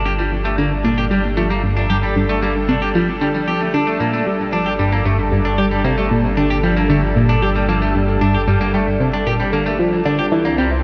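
A tight, driving sequenced synth carries the riff in this cut from a longer piece of hypnotic, expansive space music, its wave-folded sawtooth and pulse tones snapping with a filter pluck and treated with chorus, phaser and tape echo. Alongside it, a semi-hollow electric guitar plays clean, picked arpeggios that sit up front, compressed and hollow-bodied, trailing tape echo. A lush unison pad holds sustained chords from G3 to G5, thick, detuned and warbling with a vintage chorus, fading in across the full 10.8 seconds. A round analog bass anchors the low end with a deep, dark, evolving tone and tube saturation. At 114 BPM in straight 4/4 and G minor, the harmony rests on Gmadd9 before turning to C7 at 10.3 seconds, all bathed in a lush hall reverb.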